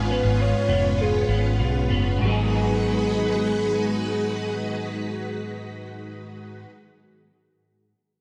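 In straight 4/4 at 94 BPM, slowing down through the first 2.2 seconds, this ethereal, hazy dream pop excerpt in G# dorian moves from C#7 to G#m7 as a shimmering string machine sustains chorused violin chords, a slightly broken-up electric guitar picks chorused, delayed arpeggios up front, a round, foam-muted vintage bass plays punchy low notes, and a velvety synth lead with vibrato, chorus and analog delay carries the melody from 0.1 s, all set in an echo-heavy chamber reverb.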